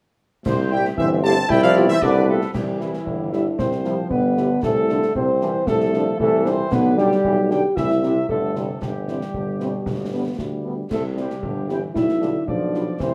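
Spirited and festive, this military-style march for wind band in C major moves at 115 BPM in a straight 2/4, with a warm trumpet section carrying the melody over a prominent mellow euphonium second line, a pure, distant small flute group adding vibrato-tinged colour only from 0.5 to 2.5 s, a clear, vintage-toned tuba on the bass, soft-attacked French horns and background trombones filling in accompaniment and sustained chords, and concert snare, dark clash cymbals and concert bass drum marking time, all set in a moderate large studio reverb.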